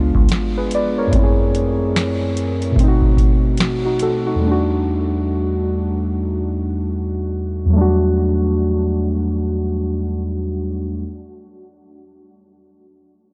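Muted, felt-like synth keys with a dark, chorused cassette-tape tone and a filter sweep carry this hazy, reflective lo-fi hip hop excerpt in E minor at 73 BPM with a swung 16th feel, moving through C#7b9, F#m7b5 and B7b9 to Em11, while a booming analog drum machine with a deep kick, tonal snare and metallic hats sits dry and up front from 0.1 to 4.2 seconds, all in light reverb with a softened top end.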